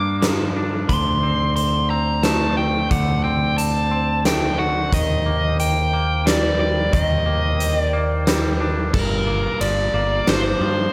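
A band playing live in one room, with light reverb, opens this brooding, cinematic post-rock excerpt in G minor at 90 BPM in 3/4, where a dark, smooth lead guitar with overdrive and digital delay carries the melody up front over clean, twangy picked arpeggios from a second electric guitar and a growling, overdriven fingered bass. A huge arena drum kit with a fat snare, punchy kick and bright cymbals enters at 0.2 seconds, while a reedy, breathing pedal harmonium holds mellow chords in the background from 0.9 to 8.9 seconds. The harmony moves from Gm7 through D7(no3) to Eb before returning to Gm7 as a new section begins at 8.9 seconds.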